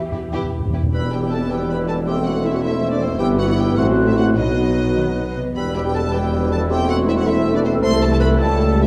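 A clear, focused violin section carries the melody in this urgent, restless classical piece for symphony orchestra, an uneven 6/8 with rubato that opens on a round, soft-mallet timpani fill ending at 0.9 s, when a dark clarinet, mellow cor anglais, bassoon, a smooth-topped French horn section holding sustained chords and a distant tuba join the lush second violins, expressive violas with portamento, rich cellos, close double basses and a pure flute ensemble in the background, heard through a wet recital hall reverb.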